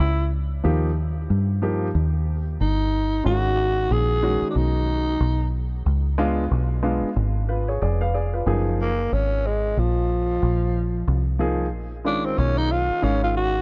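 A lightly swung sixteenth-note groove in 4/4 carries this cool, warm jazz-hop excerpt, anchored by a deep, dark fingered electric bass with a round, foam-muted tone sitting up front, while a woody upright piano joins at 0.6 seconds with lush extended chords. A growling tenor saxophone carries the melody from the start, breathy and raspy with subtone, vibrato and scooped notes, then steps into a solo at 8.5 seconds as the harmony shifts. The whole is set in a small room with light reverb and has the dulled, lo-fi top end of cassette tape.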